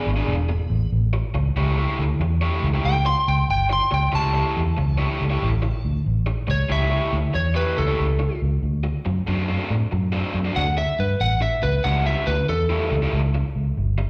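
Heard through a venue's PA with the bloom of a recital hall, this laid-back, swaggering swung blues excerpt features an up-front electric slide guitar, slightly broken-up and fingerpicked with plate reverb and slapback echo, soloing over a lo-fi overdriven garage guitar riff and a dark, round, foam-muted fingered bass, with the changes moving from E7 to A7, then to D7 at 8.6 seconds and back to A7.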